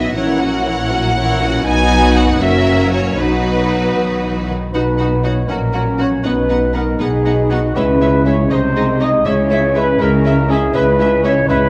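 Set in a reverberant recital hall, this dramatic, restless classical excerpt for symphony orchestra moves at 80 BPM in 6/8 in B major, with a lush, vibrato-rich violin melody over a focused second violin line, smooth violas, mellow sustained French horn chords, ringing fingerpicked harp arpeggios and a bowed bass line from woody cellos and distant double basses, while a dark, up-front trumpet section joins with stabs from 4.7 seconds.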